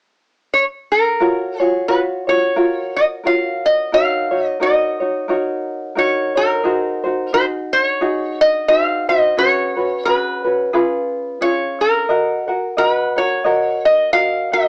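Dreamy and languid, this Hawaiian piece in F# major drifts along at 88 BPM in 4/4 with a gentle swing, tuned slightly low to A4 = 438 Hz and cut from a longer work. A metal-body resonator slide guitar carries the melody from 0.5 seconds, its metallic, nasal slide tone played with fingerpicks and sitting up front. A light, thumb-plucked tenor ukulele joins at 1.2 seconds to accompany it through F#maj7, D#m7, G#7/D#, C#7sus4 and C#7 before settling on D#m, all in a lightly reverberant home cassette recording with a small-speaker sound.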